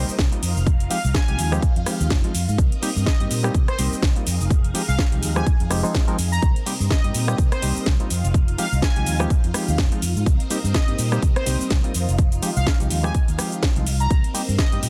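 A dense, heavily limited modern master with a digital ambience frames this funky, nostalgic slice of filtered disco house, cut from a longer piece and moving at 125 BPM in F minor with a swung sixteenth-note feel. A punchy, tape-warm electronic kick sits up front, joined by a house kit of cracking snare, metallic hats, rim click and cabasa that pumps to the sidechain, both re-recorded in a small room. A growly, amped fingered electric bass carries the low end, while a barky, reedy electric piano, lightly overdriven and phased, plays the accompaniment over lush, sawtooth string-machine chords thickened by ensemble chorus and a moving notch. From 0.9 seconds a bold, fat analog synth brass line takes the melody, detuned with a filter sweep and trailed by digital delay. A barely audible downlifter passes early on, and the harmony alternates between Fm7 and Cm7 throughout.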